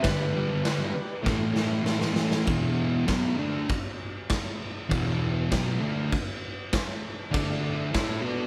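Lightly reverberant and captured as a band playing live in one room, this swaggering, raw garage rock excerpt is driven by a dark, double-tracked fuzz guitar riff up front and a gritty, saturated acoustic drum kit with a punchy kick, medium-tuned snare and crash cymbal ringing in a bright stone room. A slightly broken-up, compressed electric slide guitar sings a brief dark melody that ends at 1.2 s, while a reedy vintage combo organ with heavy vibrato holds clean chords in the background. A drum fill arrives at 1.3 s as the chords move from G to A, then the harmony shifts to E5 and D5, with the organ returning at 7.3 s.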